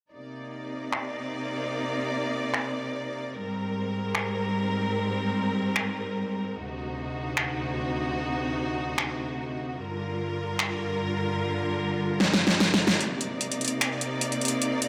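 A bittersweet, dreamy future bass excerpt in a half-time feel, where a clear, lush studio string section sustains bowed chords with vibrato from the start, a big-room electronic dance kit of finger snaps, metallic hats and a huge, filtered snare arrives at 0.9 seconds and drops in a fill at 12.2 seconds, and a long hall reverb bathes the whole.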